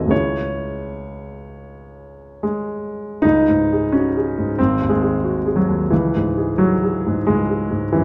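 Freely flowing rubato in four carries this passionate, lyrical romantic character piece for solo piano, a short cut from a longer work in which an up-front baby grand with a natural tone and short sustain ranges from deep bass to the upper treble, moving from its opening minor chord into a new section at 3.2 seconds, all set in the moderate reverb of a recital hall with a dark, warm production.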